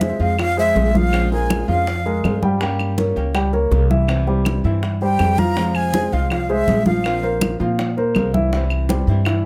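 Cuban son in the guajira style, nostalgic and danceable, built on a fingerpicked flamenco guitar with old strings and a dark, mellow grand piano whose arpeggios carry audible action noise and long sustain. Up front, a breathy jazz flute sings two expressive, vibrato-tinged phrases, from 0.0 to 2.4 seconds and again from 5.0 seconds, over a growly, thumpy pizzicato upright bass on steel strings. Hard-handed congas sit dry and thin in the background, round low-tuned bongos ring in a live room, and compressed, saturated claves join at 0.4 seconds, all under light reverb in this fragment of a longer piece.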